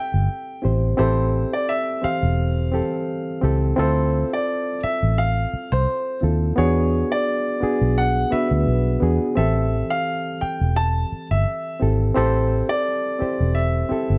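A dark, warm production with light reverb and the feel of a small room frames this cinematic, silky fragment of lush 1970s-style soul, cut from a longer piece. It moves at 86 BPM in 4/4 with a gentle 16th-note swing, set in D minor, with harmony drifting through Am7, Fmaj7, Dm7 and E7 before resting on C69 at 12.2 seconds. A warm concert grand piano carries the melody in its upper register, natural and full with deep bass, while a reedy, barky electric piano plays accompaniment, bright and lightly overdriven through its built-in speakers with spring reverb. Entering at 0.1 seconds, a vintage muted fingered electric bass is the loudest part, round, punchy and amped with a foam-muted thump. All three instruments sit up front across the single section, which runs to 14.2 seconds.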